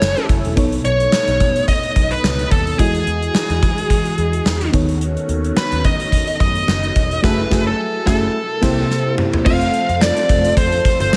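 Polished and glossy with light small-room ambience, this romantic 1980s-style pop excerpt sets a dark, overdriven lead guitar melody up front over a gated drum kit with a tight kick and bright cymbals, a round foam-muted picked bass, a soft chorused FM electric piano, a very quiet swirling phased pad, and detuned sawtooth synth brass stabs that return at 7.2 seconds as the band accents lead into a drum fill.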